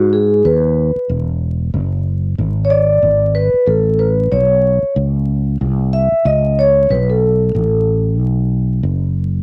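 Relaxed and smooth, this swung hip hop fragment features a mellow, airy vibraphone played with soft mallets, its ringing metallic tone carrying a slow motor vibrato and colored by cassette tape grain and plate reverb as it takes the lead over rich chords moving from a rootless Emaj9 through E7 to Aadd9. Underneath, a warm fretless electric bass sits direct and amped up front, carrying on alone after the vibraphone stops at 8.0 seconds until the close at 9.4 seconds. The whole recording has a cozy home-cassette character, with moderate booth ambience and a layer of vinyl crackle.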